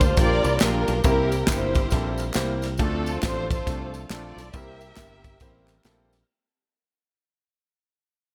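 Light reverb and studio ambience frame this short, polished fragment of uptempo gospel, which fades out across its full 6.3 seconds. The mood is uplifting and soulful, moving at 138 BPM in 4/4 with a swung eighth-note feel over Gm7, C7, Dm7 and back to C7. Up front, a lush, bowed studio string section carries the melody with expressive vibrato and a smooth top, while a punchy, growly fingered electric bass sits just as close. An airy acoustic drum kit with a punchy kick, medium-tuned snare and ride cymbal is the most forward part of the mix. A warm baby grand piano supplies accompaniment, and further back a full, clean tonewheel organ holds sustained chords through a fast rotary speaker with chorus vibrato and audible key click. Tambourine and group handclaps add a live-room sparkle in the background.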